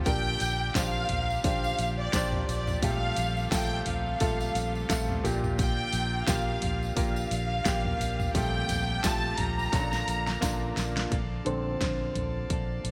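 Piano-driven pop in Bb major at 87 BPM, this short cut from a longer piece carries a warm, hopeful mood with a gentle 16th-note swing. A clear, woody upright piano provides the accompaniment, joined by a lush violin section that carries the melody with vibrato and portamento until about 10.8 seconds. Underneath, a dark, foam-muted fingered electric bass holds down the low end while a punchy pop drum kit with a fat snare and toms drives the groove, with a drum fill leading from 9.7 seconds. A clean, direct-recorded electric guitar picks a riff with subtle chorus, a brassy pipe organ trumpet stop with audible chiff sustains chords in the background, and a jingly tambourine sits distant in a large room. The harmony moves from Bb6 through Fadd9/Bb and Gm7/Bb to Bbmaj7, and at 11.1 seconds the upright piano steps forward for a brief solo. The production is bright in a 1980s digital style, with light studio reverb.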